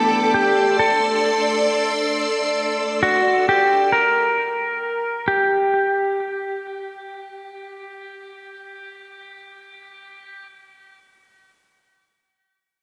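This dream pop excerpt in free time opens with a clean, twangy electric guitar in the background, fingering brief arpeggios that stop at 0.9 seconds, beneath up-front, full-bodied sawtooth string machine chords on C69 that hold until 3.9 seconds, while a compressed pedal steel guitar with fingerpicks, slide, volume swells and delay carries an ethereal, floating melody as the music slows down, ending at 10.5 seconds in a dreamy mix soaked in lush hall reverb.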